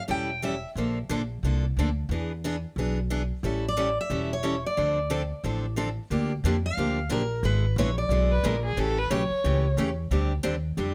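A swung 4/4 pulse drives this acoustic string swing, or jazz manouche, at a brisk 180 BPM in D minor, its mood virtuosic and bittersweet. A pizzicato upright bass with gut strings sets a woody, thumpy foundation, while a boxy parlour acoustic guitar supplies the accompaniment, finger squeaks audible in the close, detailed sound. A bright dreadnought guitar carries the picked melody, sounding a brief phrase at the very start and returning at 3.7 s. A bowed violin enters at 8.3 s with a short second line, expressive with vibrato and portamento, its smooth top touched by a slapback echo. The harmony moves through chords such as Bbmaj7, E7 and Dm7, and the recording is dry, placing the instruments up front in this cut from a longer piece.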